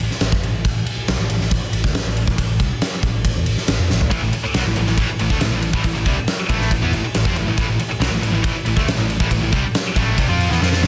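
A big acoustic rock drum kit sits up front in a bright stone room, its punchy kick and fat snare driving this menacing, heavy hard rock excerpt in A minor at 139 BPM alongside ride cymbal, toms and a growly, amped picked electric bass. After a drum fill at 3.9 seconds, three picked distorted guitars enter at 4.1 seconds and play the riff further back in the mix: one compressed, one high-gain and one double-tracked and tight. Another drum fill arrives at 10.6 seconds, all within a small room ambience and a dense, heavily limited modern master.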